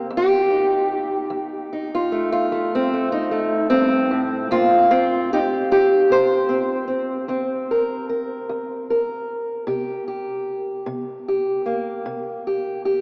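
Acoustic country blues in a laid-back, soulful mood, moving at a slow 50 BPM in 12/8 with a straight feel. A single fingerpicked steel-string acoustic guitar carries the whole 13-second excerpt alone, spanning from E2 up to C5. Its parlour-sized tone is dark and boxy, sitting up front with audible finger squeaks on the strings. The harmony moves from F7 to C7 at 4.9 seconds. The sound is drenched in a cathedral reverb with a long 5.4-second tail, as if played in a vast, echoing space yet heard through a small speaker, and the clip is cut from a longer piece.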